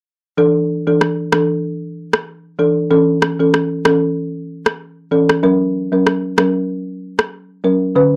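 A dry, gritty recording with a moderate small-room reverb sets this tough, sultry dancehall excerpt at 95 BPM in 4/4, with a light 16th-note swing. A woody, rustic folk marimba played with medium mallets carries the accompaniment from 0.4 s, sitting up front with a boxy character as it moves through Dsus2, A and F#. A tape-warm electronic rim click joins at 1.0 s and stops at 7.3 s, sitting forward in the mix.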